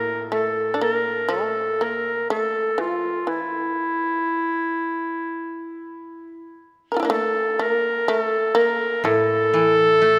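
Bathed in the long, wet reverb of a cathedral-like space, this short cut from a calm, austere piece of Japanese traditional chamber music drifts in rubato at 62 BPM in 4/4, with a clear, soft-attacked clarinet carrying the classical-style solo melody up front beside a bright, buzzing, plectrum-plucked fretless shamisen on the percussive second line, while a dry, woody koto played with fingerpicks adds low accompaniment from 0.0 to 2.3 seconds and returns at 9.0 seconds.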